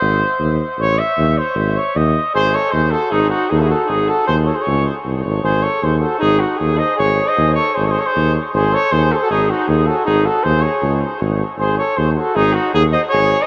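Bittersweet and virtuosic, this excerpt of Balkan folk music moves at 156 BPM in a swung 2/4, set in G# Phrygian dominant. A mellow cornet carries the melody with light vibrato and a touch of delay, sounding distant and roomy yet up front in a classical style. It opens as a brief solo over the punchy tuba, whose light vibrato and pop-style bass line anchor the low end from the start. At 2.4 seconds a flugelhorn enters quietly with a second line, its warm, distant tone placed further back in the mix. The whole piece is soaked in a huge, dreamy ambient reverb with a long 8.8-second tail, giving the small brass group a hazy, cavernous glow as it moves through G#, A and C# harmonies before the cut at 13.5 seconds.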